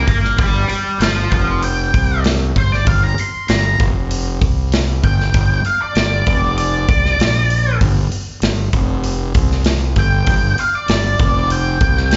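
Gritty and smoky, this short cut from a longer piece blends blues rock power trio and southern rock at 97 BPM in a straight 4/4, set in G minor over a G5 chord. An octave-fuzz lead guitar carries a solo from the first second to the end, picked with a dark, distorted tone run through wah and slapback echo, ranging from C5 to C6. Beneath it, a fingered electric bass growls with overdriven fuzz, sitting low between F1 and C2 and heard direct and amped. A big acoustic rock kit joins at 0.1 s with hi-hat, a punchy kick and a medium-tuned snare, placed up front alongside the bass and guitar. The whole performance comes across as a live gig heard through the venue's PA, with small-room club reverb and a muffled top end that stops short of 7.7 kHz.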